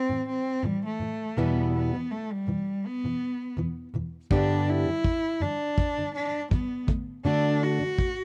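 Easy-going and heartfelt, this short acoustic pop piece, cut from a longer work, moves with a light sixteenth-note swing. A single bowed cello carries the melody from the opening moment, its tone rich, smooth and even, sung with vibrato and placed close and up front. Beneath it, a plugged-in jumbo steel-string acoustic guitar is fingerpicked on old strings, giving a woody, full-bodied accompaniment through a progression of Am, Em, G and D. At 4.3 seconds a muffled, punchy kick drum joins, played alongside brushes in a small room with a lo-fi, rolled-off top end. The whole recording is dry and close, with little reverb and a 1970s studio character, before it stops at 8.2 seconds.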